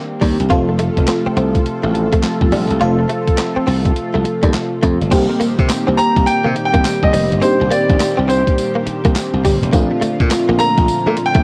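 A swung 16th-note groove at 104 BPM drives this punchy, slick new jack swing passage in C dorian. From 0.2 seconds, a gritty, compressed, pitched-down boom bap sampler-style kit (thumpy kick, high-tuned snare, hi-hat, handclaps, tambourine and crash) sits up front with a bright, punchy slap bass. Beneath them, a mellow FM electric piano with a soft pad layer sits in the background with chorus and phaser, a smooth, detuned sawtooth analog pad holds sustained chords, and a clean, compressed electric guitar recorded direct plays a picked riff with ensemble chorus. At 6.0 seconds a clear, polished baby grand piano takes the melody up front with a cassette-tape tint. Across the passage the chords move from F to Cm7 and Bbmaj7, all in light reverb with a home-cassette character.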